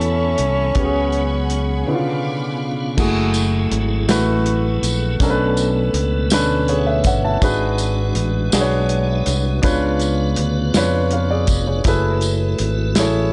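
A distant, roomy tenor saxophone leads the opening of this fragment of a slow gospel piece in 6/8, singing a short solo phrase with jazz-style vibrato until 2.2 seconds. The mood is fervent and solemn, carried by an intimate grand piano, up front with audible action noise, and a punchy fingered electric bass that sits forward in the mix. A piping, scooped tonewheel organ holds sustained chords through a fast rotary speaker with chorus vibrato and key click, and steps out with a fill at 6.3 seconds. In the opening, a chamber string section adds soft, high sustained chords played sul tasto with light vibrato. An acoustic soul drum kit with dark cymbals, a medium-tuned snare and a tight kick keeps a rolled-off, relaxed pulse, joined at 3.0 seconds by a jingly tambourine, while lush extended chords and light small-room reverb give the whole a close, churchy glow.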